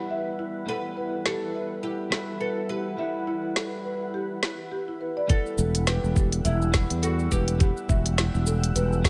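Earthy and warm, this organic downtempo excerpt moves at 104 BPM in 4/4 with a gentle 16th-note swing, resting on an Emadd9 chord in E minor. A cloudy, detuned granular pad and a slightly broken-up electric guitar open together, both breathing with sidechain pumping, the guitar trailed by digital delay and the pad blurred in its own reverb. Mellow marimba arpeggios played with soft mallets join almost at once, round and filtered with a touch of delay, and at 0.7 seconds a plectrum-plucked oud carries a melody through tape echo until 8.4 seconds. A layered deep house kit arrives at 1.3 seconds with a woody snare, smooth hats and shaker, all softened by low-pass filtering. At 5.3 seconds the second section brings an overdriven, thumpy kick up front, quickly followed by a growly fretless bass with analog chorus and pumping, giving the close a gritty low-end weight under light digital ambience.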